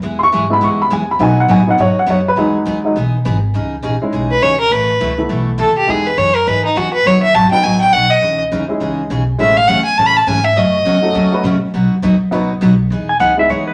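Western swing country cut from a longer piece, playful and swinging at 205 BPM in E major, with a bright, full-bodied picked acoustic guitar and a woody, thumpy pizzicato upright bass carrying the accompaniment throughout. A warm, woody upright piano with short sustain takes the opening solo, then a clear, smooth bowed fiddle with light vibrato leads from 4.3 seconds, its finger-squeaking guitar companion and piano close up front. At 13.1 seconds a clean electric lap steel slides in with a brief second line, all set in a wet studio reverb.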